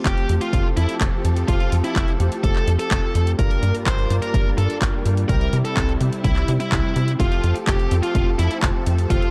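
A steady, straight 4/4 pulse at 126 BPM drives this romantic, danceable italo disco fragment in F major, built on a punchy, tape-warmed electronic kick and a layered house kit of handclaps and hi-hats that sits lower in the mix. Underneath, a tight sequencer bass plays a driving, sawtooth-and-square line with a fast-attack filter pluck and tube saturation, and it stands among the loudest parts. Lush bowed symphonic strings hold smooth sustained chords from 0.0 seconds, and fat, brassy analog synth stabs with chorus, vibrato and a filter sweep stay in the background. Entering at 0.1 seconds, a dark, high-gain lead guitar picks out the melody through distortion, gritty 12-bit sampler texture and tape echo. The harmony moves from Fadd9 to Gm7 at 3.4 seconds, then to C, and returns to Fadd9, all wrapped in a shadowy digital ambience.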